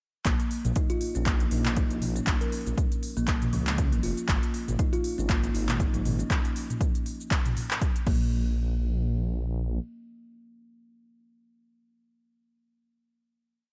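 Swung sixteenths and a punchy, overdriven four-on-the-floor kick drive this earthy, hypnotic afro house piece, where a deep house kit of smooth hats, cabasa, handclaps, toms and crash supports a dark, rumbling detuned saw bass riff with sidechain pumping and a woody kalimba arpeggio sequence touched with analog delay, all in a dry mix, before the bass sustains alone into the final hit until 9.8 seconds.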